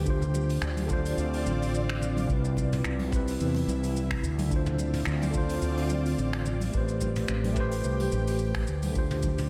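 Relaxed and warm, this sunset chillout excerpt moves at 108 BPM in 4/4 with a 16th-note swing, set in D dorian and cut from a longer piece. A bright, clean tine electric piano carries the accompaniment through a delay, while an ethereal, airy pad holds sustained chords alongside it, its detuned unison voices softened by ensemble chorus, tremolo and a slow attack with a long release. Up front, a fretless electric bass sits low and warm, anchoring the harmony as it moves from Dm7 to Cmaj7, back to Dm7, then to Am9 before returning to Dm7 at 9.0 seconds. An electronic kick drum adds a deep, dry, overdriven pulse, joined by a soft brush kit with finger snaps, hi-hat, shaker and toms, and very quiet, thick-skinned congas tucked into a small room. The whole mix is dreamy and soaked in plate reverb, giving the short passage a hazy, unhurried glow.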